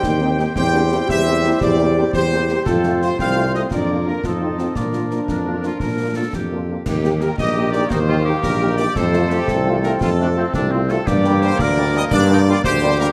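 Proud and spirited, this excerpt from a military-style march for wind band moves at 114 BPM in a straight 6/8, in B-flat major. A clear, close-miked trumpet section carries the melody with light vibrato, while a tight woodwind section adds a second line above a dark euphonium that shares that role in the background until 6.6 seconds. The French horn section enters at 0.2 seconds with a warm, vintage-tinged accompaniment, and a trombone section holds sustained chords in the background. Up front, a roomy tuba anchors the bass, and concert snare, bass drum and clash cymbals with dark cymbal tone keep the march going in a live room. The phrase is stated twice, shifting through chords such as F, B-flat, E-flat and G minor, all set in a moderate scoring-stage reverb.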